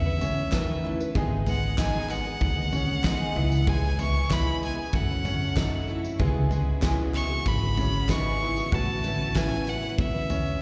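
Wistful and stirring, this indie folk passage moves at 95 BPM in a straight 4/4 in C# minor, cut from a longer piece and built as a layered arrangement. A clear, intense fiddle carries the melody with light vibrato and an airy bow, its boxy tone given slapback and tape echo. Beneath it a picked twelve-string acoustic guitar shimmers with octave-doubled strings, while a bright upright piano enters at 0.2 seconds with brilliant, open arpeggios that also carry slapback and tape echo. A dark chamber string section holds very quiet sustained chords with a soft, sul tasto touch, and a woody pizzicato upright bass on gut strings thumps out the low end. A loose indie drum kit with a fat snare, punchy kick and toms drives the pulse in a pumping room sound, joined by a very quiet, jingly vintage tambourine and a crisp group handclap sitting distant in the background from 0.5 seconds. The harmony drifts through Aadd9, G#m, C#m7 and F#m7 before returning to Aadd9, all heard as a live gig through the venue's PA with small room ambience and recital hall reverb.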